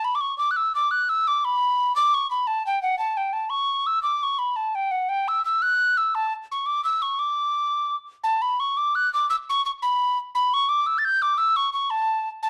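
Rollicking and bright, this cut from a longer Celtic folk tune moves at 114 BPM in a straight 6/8 in D major. A lone tin whistle plays from 0.0 to 12.5 s, close-miked and up front, its pure, hollow metal tone marked by a crisp chiff, vibrato and a slapback echo across a range of F#5 to A6. The melody moves into a new section at 8.2 s, set in a moderate studio reverb within a dark production.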